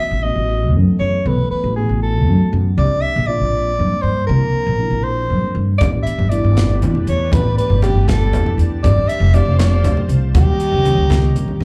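Set in 6/8 with a straight feel, this slick, funky slice of electric jazz fusion is cut from a longer piece and heard as a live gig through a club's sound system with light reverb. From the opening, a breathy, whispered soprano saxophone carries the melody in an intimate subtone with a soft attack and a touch of slapback echo. Beneath it, a mellow tine electric piano comps cleanly through phaser and slapback echo, while a woody, thumpy pizzicato upright bass sits up front. At 5.8 seconds the arrangement fills out: a crisp fusion drum kit arrives with a punchy kick and medium-tuned snare, low-tuned ringing congas played with soft hands join in the background, and a lush, detuned unison pad with chorus adds thick sustained chords, also in the background. The harmony drifts through suspended ninth chords before settling on a seventh chord, and a drum fill at 11.4 seconds closes the passage.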